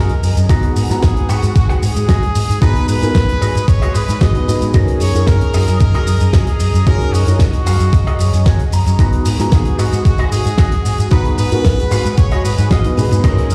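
A bright, tight trumpet section carries the melody from the very start with light vibrato and tape echo, over a lush, detuned sawtooth pad that sits in the background with chorus, phaser, 12-bit sampler grit and sidechain pumping. This is a sunny, feel-good nu-disco cut from a longer piece, moving at 113 BPM in a straight 4/4 through G#m7 and F#69 chords. A twangy, compressed electric guitar plays a riff through an envelope filter with subtle chorus and slapback echo, while an overdriven, punchy fingered bass sits up front. A damped 70s kit with a fat, dry snare, hi-hat, shaker, toms and crash comes in at 0.1 seconds, and at 0.5 seconds a thumpy, overdriven electronic kick and a dark, boxy baby grand piano with short sustain join, the piano also pumping and carrying slapback echo. A clean guitar fill arrives between 7.9 and 9.0 seconds and a drum fill lands at 13.0, all heard in light, small-room ambience with a stony, bare-room character as though played through a big sound system.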